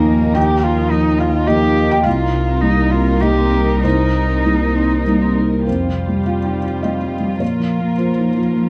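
Melancholic and longing, this rubato neoclassical piece in 3/4 is drawn from a longer work. A felt-muted upright piano sits up front, boxy and intimate, with its action noise audible. A veiled, con sordino cello sings a second line with vibrato, over hushed sustained chords from a muted chamber string section. Soft-malleted vibraphone arpeggios ring airily in the background with a slapback echo, and a dark, bowed double bass carries the bass. The vibraphone and bass stop around 5.6 and 5.7 seconds as the harmony shifts from Ebadd9 and Cm7 toward Fsus2 and Bbm, all within a moderate large-studio reverb.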